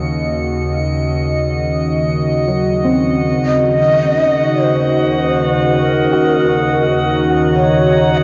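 A serene, reflective ambient excerpt opens on a smooth, detuned sawtooth pad holding sustained chords up front with chorus. Beneath it, a very quiet, round pluck plays dark arpeggios, a lush, bowed double bass section holds a low note with vibrato and transformer saturation, and a glassy harmonics texture drifts high above. At 3.5 s a breathy, hollow shakuhachi enters with the melody, its tongued chiff carried by delay, and at 4.4 s a resonant drone with moving overtones and phaser settles into the background, all of it bathed in a vast cathedral reverb and worn cassette tape with warbly pitch drift.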